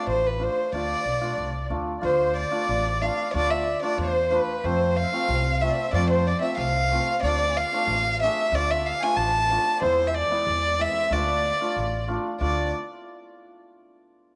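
A close, intimate violin, bowed sul tasto with light vibrato, a soft attack and an airy tone, carries the melody of this festive yet bittersweet klezmer excerpt at 93 BPM in 2/4 and D dorian sharp4, moving through Dm, F, Dm, E and back to Dm, while a reedy, vintage accordion plays a second line in the background, a shimmering, ringing hammered dulcimer accompanies, and a woody pizzicato upright bass sits up front, the whole set in a moderate echo-chamber reverb.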